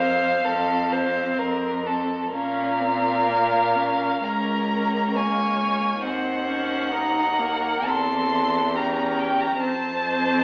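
In a rubato 4/4 pulse at 59-70 BPM, this solemn, melancholic slow romantic movement for string quartet in Bb minor sets a clear, vibrato-rich first violin singing the high melody up front over a smooth second violin's rich, distant second line, a focused viola accompaniment and a close cello bass, all four bowed by single players throughout the 10.4-second fragment, heard from further back in a stone room with a 1.3-second reverb and a thin AM-radio colour as the harmony moves from F through Bbm to a tense C13b9/E before settling on F.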